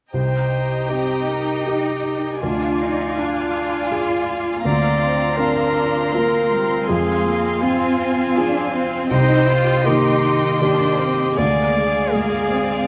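A clear, close-miked solo clarinet carries a second line through this bittersweet, longing cinematic film score cue in C minor at 80 BPM in a rubato 3/4, while a veiled, con sordino violin section sings the high melody over a second muted violin line, a dark, intimate baby grand piano with audible action noise, a lush viola section in the background, ringing harp arpeggios and a soft-attacked cello bass that enters at 0.9 s, all in a moderate scoring-stage reverb.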